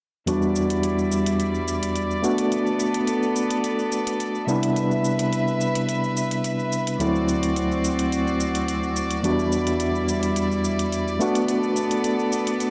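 Lightly reverberant and sleek, this cosmic nu-disco excerpt pairs a barky, gritty overdriven tine electric piano, pulsing with fast tremolo and analog delay, against an earthy, low-pass-filtered chamber string section holding sustained chords with light vibrato, while a layered, overdriven electronic hi-hat and shaker sits low in the mix as the harmony cycles through Em7, Bm7, Cmaj7 and D7.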